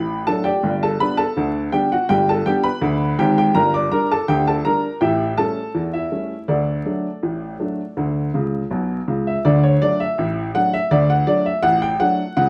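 A woody, vintage-toned upright piano plays alone through this lively, cheerful ragtime passage, cut from a longer piece in a straight two-beat metre and ranging from deep bass notes to bright upper keys. The harmony moves from D to G, shades into G minor, then passes through A7 back home to D, with a piano fill at 8.3 seconds leading into a new section at 9.4 seconds. A wet studio reverb and vinyl crackle place the listener further back in the room, giving the recording an old-time feel.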